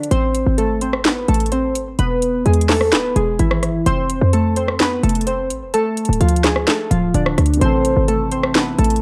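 A half-time trap beat at 128 BPM drives this melancholic, menacing hip hop excerpt in A harmonic minor, with sharp snare, metallic hi-hats, rim clicks and handclaps sitting up front alongside a punchy, tight 808-style bass whose sine tone carries a noise layer and a fast, decaying attack. Glassy, wave-folded digital keys carry the melody over an Am, E, F, Dm progression, colored by chorus, a filter sweep and a cassette-tape grain. At 7.6 seconds a dark, mellow grand piano with long sustain joins as accompaniment, all within a light reverb and digital ambience that gives the home-cassette recording its room.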